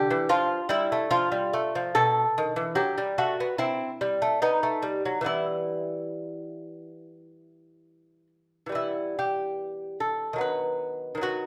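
A grave, solemn mood hangs over this short excerpt of a baroque-style dance in classical style, played on a solo lute with a free, rubato feel in four. The lute sits up front, its gut strings fingerpicked with a delicate touch, and the paired courses, some doubled at the octave, give each note a gently shimmering body. The harmony moves from F through a bare B7 and C to B before settling on E minor at 5.3 seconds, lending the opening phrase a searching, sombre cast. At 8.8 seconds a new section begins, reaching a B chord over D-sharp at 10.4 seconds just before the cut at 11.5 seconds. A moderate reverb from a large studio surrounds the instrument, giving the intimate playing a sense of space and gravity.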